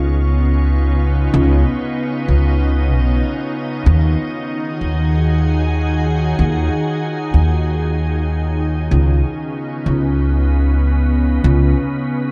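An up-front upright bass anchors this meditative, spacious ambient dub excerpt, its pizzicato gut strings sounding woody and thumpy with a touch of tube saturation, and it plays from the start until 11.7 seconds. Beneath and around it, a soft additive organ-like pad holds sustained chords built from pure, slightly detuned sine tones, with a slow attack and long release that let each chord bloom and linger. The pad is bright and also up front, thickened by ensemble chorus and its own built-in reverb, and it carries on alone briefly until 12.3 seconds. The harmony moves from Db9 to Ebm11 at 3.9 seconds and back to Db9 at 8.9 seconds, keeping a calm, suspended feeling. At 95 BPM in 4/4 with a light swing on the 16ths, the groove feels unhurried, set in a small room with light reverb.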